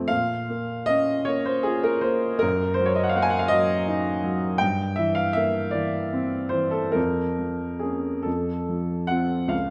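In a slow, rubato 12/8 lilt of about 46-57 BPM in dotted quarters, this brief cut from a longer romantic nocturne for solo piano in Bb minor unfolds in a melancholic, mournful mood, the baby grand sounding clear, open and up front with long sustain from Db2 up to Ab5 as it moves from Bbm through Ebm/Gb and C7/G to Bbm/F before settling on F at 8.3 seconds, all wrapped in the moderate reverb of a recital hall.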